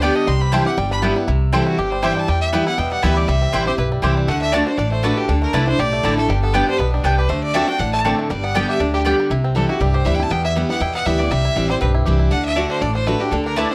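A swung 4/4 pulse at 239 BPM drives this joyful, rustic bluegrass cut, where a biting, intense bowed fiddle with light vibrato and a twangy, percussive fingerpicked banjo share the melody over a full-bodied dreadnought guitar with audible finger squeak, a thumpy, woody pizzicato upright bass on gut strings, and a double-strung mandolin whose slapback-echoed stabs drop out at 9.2 seconds before a brief return at the very end. Everything is captured by close, detailed microphones in light reverb as chords move from C through Em, D and G.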